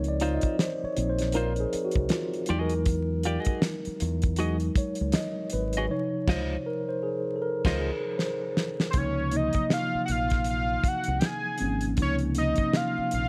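Smooth and soulful, this neo-soul R&B excerpt opens with a mellow tine electric piano solo over a round, punchy dub bass and a damped 70s kit with a fat snare and dark cymbals, while a clean, hollow-body electric guitar adds a compressed second line until 7.9 s. A band accent and a brief drum fill lead into 8.9 s, where a fat, detuned analog lead with chorus and vibrato takes the melody up front. Swung sixteenths, light small-room reverb and a layer of vinyl crackle frame the cut.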